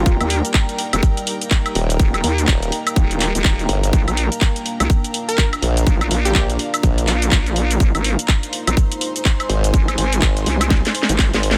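Gritty and bouncy, this bass house excerpt moves at 124 BPM with a 16th-note swing, riding a tight, up-front electronic kick and a garage kit of cracking snare, warm hats, handclaps, shaker and woodblock that closes on a drum fill from 10.7 seconds. Two wobbling bass synths carry the low end through chords of Eb, Bb and Ab: a nasal, resonant vowel-sweep bass with tube saturation and chorus throughout, joined at 1.8 seconds by a sawtooth formant-sweep bass, both pumping with sidechain compression. Behind them a deep, moody pad with built-in reverb holds sustained chords and a soft, breathy, warbling vintage pad adds texture, while a bright, punchy unison lead with tape echo surfaces briefly in the background around 5.3 seconds, all in a dry, close mix.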